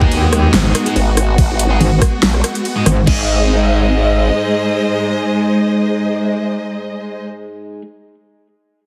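Chaotic and heavy, this short cut from a longer heavy wobble dubstep piece runs at 142 BPM in 4/4 with a half-time feel and a light swing on the sixteenths, opening straight into a drop over G#m before shifting to G# at 3.1 seconds. A metallic, FM-edged wobble bass and an overdriven, knocking electronic kick drive the first 3.1 seconds, joined by a dubstep drum kit with a huge snare, metallic hats, rim clicks, ride and crash that fall away at 3.2 seconds. From 1.0 second a growling, detuned growl bass with a formant filter pushes up front alongside the wobble, saturated and thick with chorus, lingering past the drums. Above it all, a studio string section holds sustained chords with vibrato, portamento and a soft bowed attack, pumping under sidechain, while a bright, double-tracked distorted electric guitar cuts through with picked stabs until 7.8 seconds. The mix has light reverb and a heavily compressed, radio-like sound.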